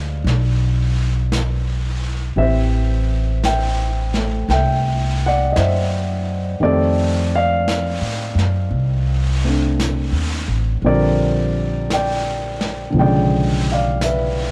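Recorded at home on cassette with a light studio reverb, this excerpt from a longer jazz ballad moves at a slow 57 BPM in a swung 4/4, with a tender, late-night mood. An up-front warm grand piano carries the harmony through changes such as Am7, F7 and Bb69, while a woody, growly, thumpy pizzicato upright bass sits close beside it. From 0.3 seconds, a vintage brush kit with a rolled-off top and a pumping small-room sound plays brushed snare and hi-hat quietly behind them.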